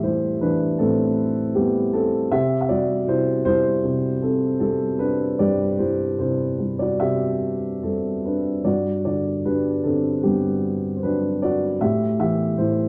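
Set at 77 BPM in 4/4, the playing moves with a loose, rubato feel that lets the pulse breathe freely. This is a tender, peaceful classical piece for solo piano, lyrical in character and heard as a short cut from a longer work. A single dark grand piano carries everything from start to finish, spanning G2 to E5 with a mellow, slightly boxy tone that sits up front. The harmony opens on Am9, settles onto C at 2.3 seconds, and later passes through Gmaj7 before coming to rest on Am7 at 11.8 seconds. A moderate recital hall reverb surrounds the instrument, and the dark, warm production gives the whole passage an intimate glow.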